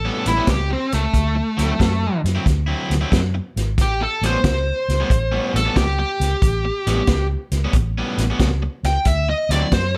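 A smooth, overdriven lead guitar takes the spotlight from the very start, playing a soulful, up-front solo bathed in plate reverb that reaches from its low register up high across this short excerpt from a longer piece. Beneath it, a crunchy, picked overdriven guitar keeps a bright riff going from 0.1 seconds, sitting a little further back in the mix. A vintage fingered electric bass, foam-muted, round and dark, anchors the low end close to the listener. The vintage acoustic drum kit, with its punchy kick, medium-tuned snare and hi-hat, has a natural small-room sound with a rolled-off top and enters at 0.3 seconds. It is a rollicking electric blues shuffle with a swing feel in 4/4, moving between A9 and D9 chords under a light reverb.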